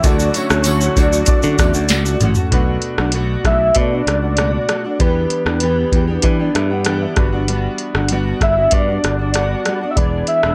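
Nostalgic and sunny, this excerpt of indie bedroom pop moves at an easy, straight pulse in 4/4, drifting from Dmaj7 through Bm7, Em7 and Gmaj7 before landing on E7 at 10.0 seconds. A soft, octave-layered synth lead carries the melody with a round, mellow tone, thickened by ensemble chorus, a slapback echo and plate reverb. Beneath it, a full-bodied fingerpicked steel-string acoustic guitar shimmers through analog chorus and vibrato, while a worn, woody upright piano, slightly detuned, sits in the background. A smooth analog pad with chorus and tremolo and a jingly tambourine colour only the opening, the pad dropping out at 2.5 seconds and the tambourine at 2.0 seconds. Up front, a growly, punchy picked electric bass sits alongside a vintage rhythm box whose deep kick, crisp snare and metallic hats play a drum fill from 1.9 seconds into the second section, all inside a small, moderately ambient room.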